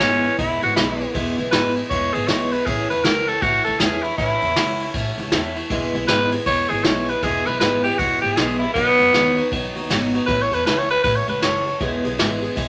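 A raspy tenor saxophone carries the melody up front until 11.8 s in this rollicking, upbeat rockabilly excerpt in E major at 158 BPM with a swung feel, backed by a bright, boxy picked swing-style acoustic guitar, a woody, growly pizzicato upright bass and a vintage brush drum kit with dark cymbals and a punchy kick, all set in a wet studio ambience.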